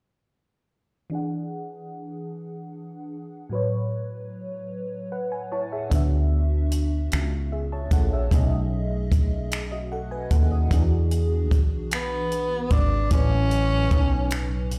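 A breathy tenor saxophone with vibrato and scooped notes takes the solo melody at 11.9 seconds, its delay trailing it through this warm, sensual slow six-eight R&B piece cut from a longer work. A lush, dreamy FM electric piano with a soft pad layer opens alone under chorus, phaser and a filter sweep, adding a fill before a dark, round fretless bass and a dry, compact cocktail kit of finger snaps, hi-hat and punchy kick enter together at 5.9 seconds. The sound carries the echo of a bare stone room heard through a big sound system.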